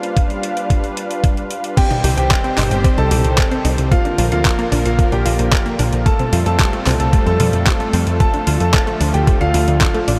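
Italo disco excerpt with a nostalgic, bittersweet mood: a lush, nasal detuned pad holds sustained chords alongside an overdriven, detuned 8-bit drum machine with crash, handclaps, hi-hat and toms and a thumpy, up-front electronic kick, and at 1.8 seconds a brilliant concert grand piano takes the melody with delay over them, joined by a sawtooth analog pluck playing arpeggios with chorus and 12-bit grit in the background and, from 2.0 seconds, a dark, round, punchy overdriven picked electric bass, the whole mix soaked in huge ambient reverb for a dreamy haze.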